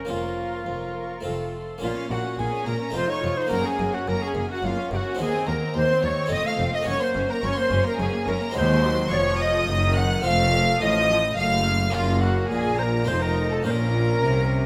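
In a straight 3/4 at 106 BPM, this stormy, driving passage from a baroque-style concerto movement with solo episodes unfolds in Bb minor, tuned to A4 = 439 Hz. A bright, airy alto recorder with a soft attack carries the melody alongside a rich, vibrato-laden violin section soaring high above it, while a second violin line sits in the background in the recorder's own register. Beneath them, a close-miked, dry harpsichord with a round Flemish-style tone and a far-off viola section supply the accompaniment, and a smooth cello section in the background and a clear, intense, distant-sounding double bass section enter at 0.1 s to anchor the bass. The harmony presses through F7, Gb, Cm7b5/Eb and Cdim before settling back on Bbm at 13.7 s, with a brief opening giving way to the main body at 1.8 s. A moderate recital hall reverb surrounds the ensemble in this cut from a longer piece.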